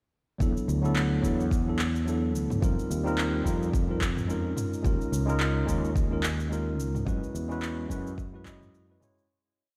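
A bright, clean tine electric piano sits up front, playing dotted-rhythm chords in drop-2 voicings through digital delay and shimmer reverb as the harmony moves through E9sus4, F9sus4, D#9sus4 and F#9sus4 in this smooth sunset chillout piece at 108 BPM with a swung 16th-note feel. Beneath it, a dark, round fretless bass carries a dub-style line with tube saturation, while a deep, soft electronic kick and a light lounge beat of cabasa, low tom and handclaps, both in studio reverb, drive the groove. The piece sounds as if played over a big sound system in a bare stone room, and it fades out from 6.3 seconds to its close at 9.3 seconds.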